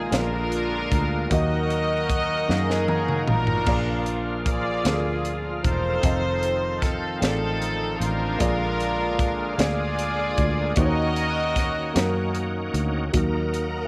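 Swaying in a slow 6/8 at 51 BPM, this solemn, fervent gospel excerpt in Eb minor sets an up-front, reedy string section on the melody over woody upright piano, a shouting tonewheel organ with slow rotary and overdrive, a round, foam-muted fingered electric bass and a crisp fusion kit with a punchy kick and high-tuned snare, as drum and piano fills at 2.5 seconds usher in a shift to harmonic minor and a distant, lush string section joins on sustained chords at 13.1 seconds.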